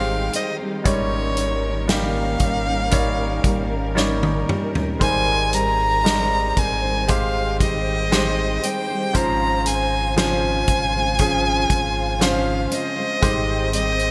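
Tender and hopeful, this slow pop ballad in Ab major moves at 58 BPM, with an up-front, smoothly bowed solo violin singing the melody through a touch of delay over a bright, polished concert grand piano, fingerpicked nylon-string guitar arpeggios shimmering with analog chorus in the background, and a dark, woody string section holding lush, distant chords. A deep sub bass with octave anchors the low end, while a natural country drum kit with a punchy kick and gated reverb enters at 0.3 seconds and plays a fill from 4.0 to 5.0 seconds. The harmony drifts from Abmaj7 through Eb7/Ab and Dbmaj7/Ab, set in a small-room ambience with a bright 1980s-style digital sheen.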